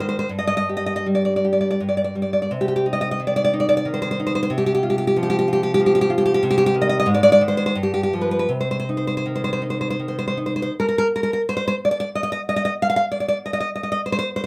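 Bright, up-front nylon-string guitar in light reverb carries this melancholic, intimate romantic excerpt for solo classical guitar, fingerpicked in C minor and 3/4 with a rubato feel drifting between 79 and 100 BPM, its harmony moving from Cm through Csus4, Ab5 and G7 back to Cm before the phrase opens into a new section at 10.7 seconds.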